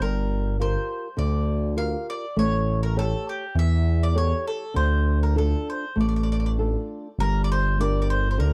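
The smooth synth bass stands out most, sitting up front with a mellow, nasal tone built from detuned sawtooth, square and triangle waves, its fast attack giving way to sustained notes with vibrato and a touch of transformer saturation. This is a passionate, romantic Italian folk serenade in D minor, moving at 101 BPM in 4/4 with a rubato feel, cut from a longer piece. A mandolin carries the melody with a round, picked tone on double strings, while a dark, small-sounding nylon-string guitar fingerpicks the accompaniment, its finger squeaks audible. All three parts play throughout the 8.5 seconds, moving through Gm7, A7 and Dm before a new section arrives on Gm at 7.2 seconds. The sound is dry and close, like a 1970s studio recording with a small room ambience.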